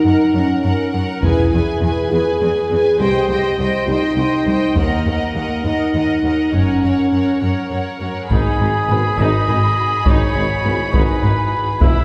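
Opening on bowed strings, lush violins carrying a focused, vibrato-rich melody over a distant second violin line, even violas and smooth cellos, with mellow French horns sustaining chords beneath, this dramatic, relentless cinematic orchestral cue in G# minor moves at 68 BPM in 6/8, adding hard-stick taiko drums and background double basses at 1.2 seconds before a roomy solo trumpet's up-front stabs and a distant tuba join at 8.3 seconds, all heard from further back in a reverberant scoring stage as a cut from a longer piece.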